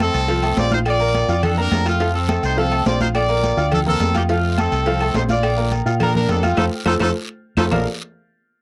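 Salsa at a festive, sunny 210 BPM in Bb major, cut from a longer piece, where a brilliant, punchy horn section with light vibrato carries the loose, up-front melody over a clear, worn, slightly detuned upright piano with a cassette-tape tint, a dark, round fingered electric bass, thick-skinned high-tuned congas, very quiet low-tuned cowbell and bongos, a raspy guiro, ringing vintage timbales and agogo bells, and woody, saturated claves entering at 0.4 seconds, all in a lightly reverberant home cassette recording that closes on a band accent from 6.6 seconds with a drum fill at 7.0 seconds.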